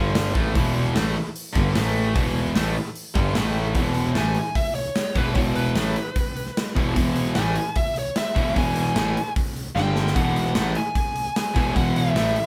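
Swaggering and powerful, this hard rock passage, cut from a longer piece, opens with two riffing guitars: an overdriven semi-hollow guitar with a hollow-body tone sitting in the background, and a tight, bright distorted guitar. Beneath them sit a round fuzz picked electric bass and a punchy, up-front gated 80s drum kit with a medium-tuned snare, as the band plays live in one large studio room. At 4.2 s a smooth, dark overdriven lead guitar enters with the melody, and a brief drum fill lands at 9.8 s.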